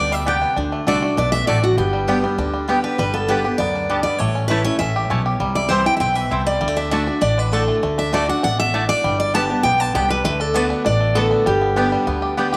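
Bluegrass in a lively, joyful mood, this short cut from a longer piece moves at a brisk, straight four-beat pulse. A picked steel-string acoustic guitar carries the melody up front, its jumbo body sounding bright and full-bodied, while a second picked concert guitar supplies accompaniment underneath. A twangy bluegrass banjo, played with fingerpicks, adds percussive arpeggios, and an upright bass plucks a woody, thumpy bass line. A mellow, round mandolin sits in the background with double-string stabs, entering at 0.3 seconds. The harmony centres on G and D, shifting after 3.0 seconds into a passage that touches on A and C before returning home, and the whole band sounds through a moderate echo-chamber reverb paired with a small-room ambience.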